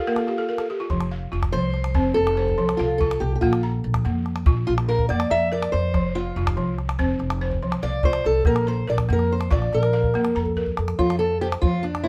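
A buzzing, woody balafon fill opens this hypnotic West African string and xylophone excerpt in 12/8, and from 0.9 seconds a dark, boxy fingerpicked archtop guitar with fresh strings and plate reverb takes an up-front solo over dry, airy balafon arpeggios, a deep, close calabash and a pizzicato steel-string upright bass, until a drum fill at 10.5 seconds leads into a brief new section at 11.0 seconds.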